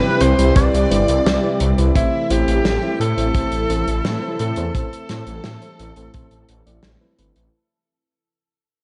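Nostalgic and cinematic, this synthwave excerpt at 86 BPM opens on a Cmaj7 that moves to Am, as a roomy tenor saxophone with vibrato and scooped notes carries the jazz-style melody through tape echo alongside a shimmering string machine line, a thick, warbling unison pad with sidechain pumping, dreamy FM electric piano stabs with tremolo, an up-front detuned saw bass with tube saturation, a mid-forward soul kit of hi-hat and gated-reverb snare, and a tight kick entering at 0.6 s, all fading out across the clip.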